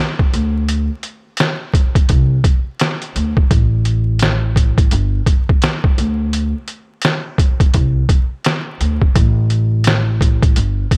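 A muffled, pitched-down sampler-style drum kit sits up front, its compressed hi-hat, thumpy kick and medium-tuned snare carrying a swung 16th-note feel at 85 BPM in 4/4 through this reflective, dark boom-bap hip-hop fragment cut from a longer piece. A woody pizzicato upright bass with steel strings joins at 0.3 seconds, moving between G1 and D2 up front alongside the drums until 10.8 seconds. Vinyl crackle colors the dry, close sound, with little reverb throughout the 11 seconds.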